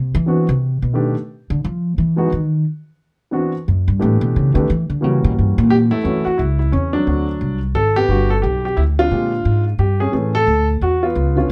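Swinging and smoky, this jazz piano trio fragment moves in a lilting 3/4 swing, with a woody, growly pizzicato upright bass taking a solo through the first 6 seconds while the grand piano enters at 0.3 seconds. Both instruments sit up front, the piano intimate and natural with its action noise audible. Light reverb and a dark, warm production give the clip a late-night glow, and it ends at 11.5 seconds as a cut from a longer piece.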